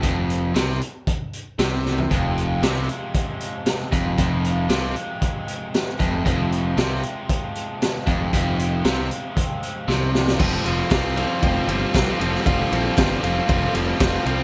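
Restless and cool, this indie rock excerpt in straight 4/4 opens with a biting, bright overdriven guitar riff up front over a growly fuzz bass and a raw garage drum kit with a high-tuned snare, boomy kick and gritty, saturated small-room sound, all under light reverb with a faint mains hum. A second overdriven guitar, warmer and set in the background with lush chorus and digital delay, joins at 2.1 seconds. After a drum fill near 10 seconds, the harmony shifts from Fm to Fsus2, and a very quiet, crisp group handclap enters.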